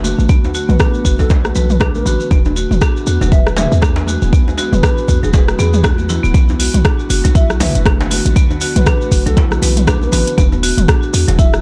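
An ethereal, airy pad with chorus, phaser and pumping, a bright hard-mallet marimba arpeggio through delay, a boomy 808-style bass, high-tuned ringing congas and a grainy shekere open this spiritual, earthy afro house passage in B dorian at 119 BPM with a 16th-note swing, soon joined at 0.3 seconds by an up-front deep electronic kick and a deep, roomy djembe, then at 0.7 seconds by a mellow, hollow bamboo bansuri melody with vibrato and delay and an overdriven deep house kit of metallic hats, rim clicks and toms, all moving between Bm7 and E in a dark, small-room mix cut from a longer piece.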